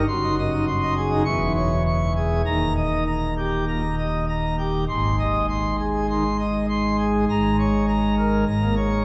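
A steady, straight 4/4 pulse at 100 BPM drives this brilliant, jubilant classical organ toccata in Ab major, cut from a longer piece. A solo pipe organ on full plenum carries the whole 9-second span, its mixtures giving a bright, ringing edge and a romantic voicing that reaches from Eb1 up to Db6. The harmony moves through Ab7/Gb and Dbm/Fb before settling on Eb at 2.5 seconds, resolving to Ab at 4.9 seconds, and closing on Bbm7/Ab. Although the organ's voicing sounds up front, the instrument is heard from further back in a wet church with a reverb time of 3.6 seconds, so each chord blooms into a long, resonant tail. The result is grand and celebratory, with the sheer mass of the instrument filling the space.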